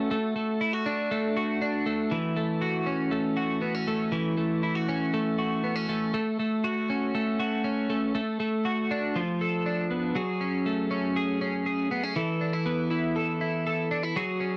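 A straight 4/4 pulse at 120 BPM carries this wistful, bittersweet indie pop excerpt in F# minor, played entirely by a lone twelve-string electric guitar that rings bright, twangy and clean, compressed and sitting up front with a cassette tape character. Picked chords move from D/A through F#m7, A6 and F6 before shifting at 10.2 seconds to F#madd9 and Esus4, the guitar ranging from E3 to A4. A modest booth ambience and the grain of a home cassette recording give the short fragment an intimate, homemade feel.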